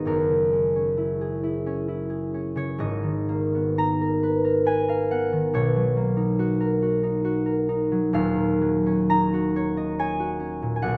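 Wistful and mysterious, this 11-second excerpt of a classical solo harp piece drifts in a rubato 3/4 at around 58-72 BPM. A bright, thumb-plucked, ringing concert harp sits up front across a range from low D#1 to A#5, tuned slightly under standard pitch at A4 = 437 Hz, and moves through lush F#9, G#madd9, Bmaj9 and D#m9 harmonies within a moderate recital hall reverb.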